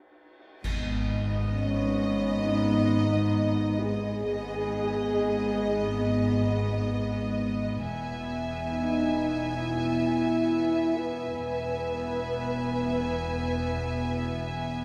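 A recital-hall reverb surrounds this tense, ominous suspense cue from a film score, where strings bowed sul tasto with soft attacks sound intimate and close. After a brief silence, a full-band accent at 0.6 s brings a burst of bright clash cymbals and concert bass drum, and a rich violin section carries the melody over a darker second violin line, a pure, floating viola accompaniment, and cellos and double basses anchoring the low end. From 1.5 s a dark, distant French horn section holds sustained chords with vibrato, while the harmony moves from G# minor to E at 7.8 s.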